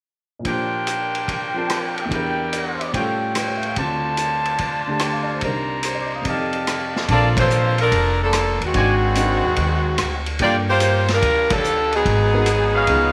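Swinging at 145 BPM in 4/4, this joyful big band jazz fragment in Bb major opens with a gritty, saturated vintage drum kit and an intimate grand piano with audible action noise beneath clear, vibrato-laden trumpet stabs, and at 7.1 seconds a bright, loose saxophone section joins with the melody over a woody pizzicato upright bass, with band accents at 7.3 and 11.4 seconds, all set in a light small-room reverb.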